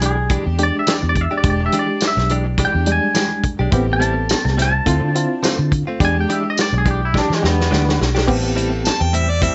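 A twangy, compressed electric guitar sings a smoky, mournful melody over a straight-eighth soul blues groove in A minor at 105 BPM, backed by a barky, reedy electric piano with overdrive and fast tremolo, bright picked guitar stabs with slapback echo, a dark, round, foam-muted bass and a dry, punchy soul drum kit with tambourine. From 0.3 seconds, a soft-attack string section floats sustained chords in the background, and a drum fill arrives at 7.1 seconds. At 8.9 seconds, a clear harmonica with light vibrato and slapback echo takes a brief solo over an Am7 chord.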